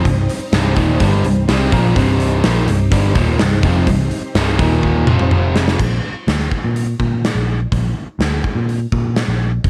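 Classic rock in C minor at 125 BPM, swaggering and driving, where two bright, distorted guitars riff low in the background over a lush, very quiet string machine holding sustained chords from Cm to Eb5 and F5, all of which stop at 5.8 s after a drum fill from 4.8 s, leaving the dark, round, foam-muted bass and the up-front gated 80s kit, with its tight kick and medium-tuned snare in an airy stone room, to carry this cut-off fragment to 9.7 s in light small-room reverb.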